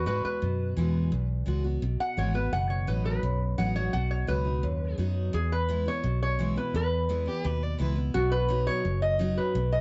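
This sunny, easygoing country excerpt opens at 171 BPM in E major, with a lap resonator guitar taking the melody from the first beat over a picked steel-string acoustic guitar and a muted, fingered electric bass. For the first 5.3 seconds the resonator plays a slide solo with a steel bar and fingerpicks, its metallic, nasal tone sitting up front over an Eadd9 chord that moves to B. The dreadnought acoustic sounds bright and full-bodied, with an audible finger squeak, while the vintage bass stays round and amped, its foam-muted notes sitting up front in the mix. As the harmony settles back on E for the second section, a single clear fiddle slips in briefly from 7.3 to 8.0 seconds with a biting, airy bow, light vibrato and an earthy edge, just before the chords turn to B again. The production is dark and warm overall, with light reverb giving the parts a small sense of space.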